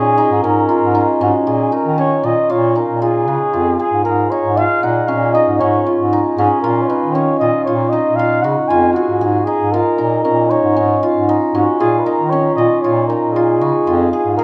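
A moderate recital-hall reverb frames this short excerpt of contemporary chamber music in an uneven 5/4 with a straight feel, resting on a single Bbm7 chord. The mood is pensive and hypnotic. A mellow flugelhorn carries the melody in a jazz style, its soft attack, vibrato and scooped notes giving it a vintage color, while an up-front hammered dulcimer spins shimmering, ringing arpeggios beneath it. A clear bass clarinet holds the bass line in a classical style, its tone gentle at the onset and roomy. From 11.8 to 13.3 seconds, a small celesta adds a very quiet, bell-like, delicate touch on one high note.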